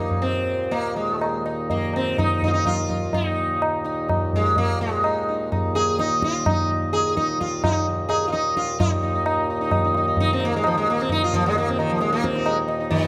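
Hindustani classical music in raga Durga in E-flat, meditative and radiant, moving in three at roughly 123 to 133 BPM and speeding up throughout this short excerpt, with a buzzing, shimmering sitar carrying the melody up front over its sympathetic strings, a reedy, nasal hand-pumped harmonium breathing a low drone, and a high-tuned, ringing, close and dry tabla entering at 0.1 seconds, all set in a concert hall's reverberant glow, with a new section arriving at 8.8 seconds.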